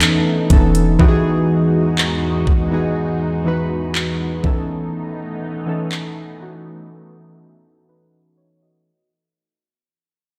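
Detuned, square-and-saw analog keys sit up front in this dreamy, romantic contemporary R&B fragment at 61 BPM in E major, moving from B7 to Emaj9 and B7/E over a lush, bright unison pad with chorus and phaser, a knocking trap kit with metallic hats and handclaps that drops out ahead of the break, a soft, dark sine 808-style bass note arriving at 0.5 s and a barely audible clean, picked electric guitar melody in the opening instant, while a filter sweep and fade-out run from 1.0 s into a break at 6.9 s, all heard through a big sound system in a bare stone room with light reverb.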